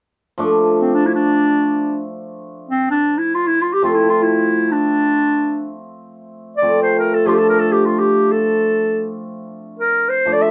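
In free, unmetered time, this bittersweet, soulful klezmer fragment opens with a hammered cimbalom at 0.4 seconds, its shimmering, ringing accompaniment sitting up front in a lower register. A warm, classical-style clarinet carries the solo melody from 0.8 seconds, soft in attack and roomy, and stands a little louder than the cimbalom. The harmony shifts at 3.8 seconds, and a moderate studio reverb gives the pair a gentle sense of space.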